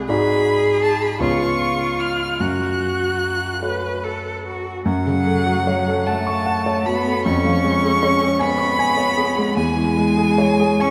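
A focused, vibrato-laden violin sings a yearning, melancholic melody up front in this slow, rubato romantic piano-trio movement in six-eight, with a rich bowed cello carrying a second line beneath it and a dark, mellow concert grand with audible action noise and deep bass providing intimate accompaniment, all bathed in a wet concert-hall reverb as the music moves into a new section at 4.9 seconds.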